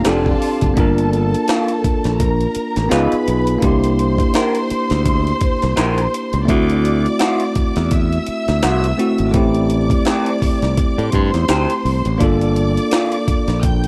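Smooth and cinematic, this cut from a lush 1970s-style soul piece in G dorian moves at 84 BPM with a swung sixteenth feel, as a gritty, pitched-up jungle sampler-style drum kit with a thumpy kick, a growly, punchy fingered electric bass and a bell-like tine electric piano carry chords from Gm9 through C9 and D9 to Am7, while a slightly broken-up, lo-fi guitar riff through a small old amp with phaser runs from 0.1 to 13.1 seconds beneath a bowed, vibrato-rich symphonic violin section, all in a dry, close 1970s-style studio sound.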